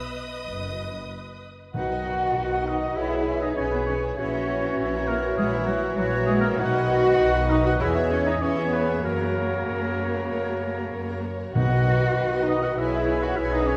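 Bowed cellos with expressive portamento and a soft attack carry the bass of this lively, graceful classical-period movement for symphony orchestra, together with double basses, both entering at 0.5 seconds. The piece is in B major at 98 BPM in 4/4, played with a rubato feel, and this excerpt is cut from a longer piece. The strings open at 0.0 seconds: a rich, vibrato-laden violin section carries the melody in the background, a clear, close second violin section adds a second line, and a very quiet, distant viola section fills in the accompaniment. At 1.7 seconds the winds arrive: an airy flute group and a roomy solo oboe weave second lines, joined at 1.8 seconds by a soft-edged clarinet, while a bassoon with light vibrato supports them and a mellow, distant French horn section holds sustained chords. Timpani struck with hard mallets sound close and dry, marking brief moments around the entry of the winds and again near 11.6 seconds. 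The harmony moves between B, C#m7/B, F#7/A# and C#m/E, and a wet concert hall reverb surrounds the ensemble.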